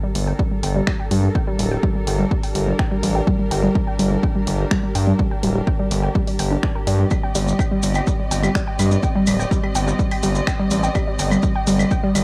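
Melodic techno at 125 BPM in G minor, dark and cinematic, cut from a longer piece: a dark, bowed string section holds sustained chords over Gm and then Cm, while a lush, detuned unison pluck spins arpeggios through tape echo and a filter sweep, both pumping against the sidechain with cassette-tape colour. A gritty, saturated synth bass sits up front beside a punchy electronic kick, with a house kit of claves, finger snaps and hi-hat in small room ambience. Grainy maracas join at 7.1 s as the harmony moves to Cm, all inside a home-cassette sound with digital ambience.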